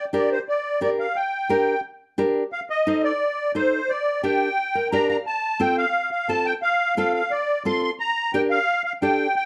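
Latin music with a fiery, passionate feel in straight 4/4, where a reedy, shimmering musette accordion carries the melody up front while a bright, fingerpicked classical nylon-string guitar accompanies and adds a short fill at 4.6 seconds, all set in a dark production with moderate studio reverb in this brief cut from a longer piece.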